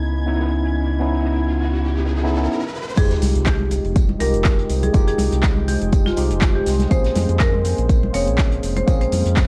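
This hypnotic, late-night deep house passage, cut from a longer piece, opens on a moody ambient pad in the background, detuned and chorused, with a filter sweep, a barky tine electric piano playing stabs through tape echo, and a round, up-front analog bass with tube saturation, all three pumping against the sidechain. An unplugged acoustic drum kit sits airy and polished far back with hi-hat, snare and tambourine, while a dark studio violin section holds an intimate, lightly vibrato high note until the break at 2.5 seconds. An electronic riser climbs through the opening before the drop lands at 3.0 seconds on an impact and sub drop. From there an overdriven electronic kick drives up front, joined by a layered house kit of metallic hats, crash, handclaps and shaker, plus bright, damped congas in the background. A woody marimba struck with hard mallets carries the melody through analog delay, over minor ninth chords and a small-room, cassette-tinged sound.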